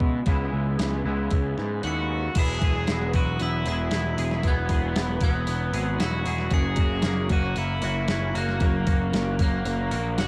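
From the very first beat, the drum machine lays down a straight 4/4 pulse at 115 BPM together with the guitars and bass, its crisp 8-bit kit putting a thumpy kick, a fat snare, hi-hat and crash cymbal up front, and the kick and snare drop out briefly from 1.8 to 2.4 seconds. This is an upbeat, carefree indie rock cut in E lydian, tuned to A4 = 439 Hz, and it has the dry, homespun sound of a cassette home recording with little reverb. Two twangy, clean, fingered electric guitars play riffs in the background while a fuzz-toned picked bass sits up front with overdrive. At 1.8 seconds a crunchy, bright overdriven guitar takes the melody through tape echo, and just after, a glockenspiel struck with brass mallets adds a sparkling, bell-like second line high above. The harmony moves from C#m7 to Eadd9 at 2.4 seconds and then to F#, where the passage is cut from a longer piece.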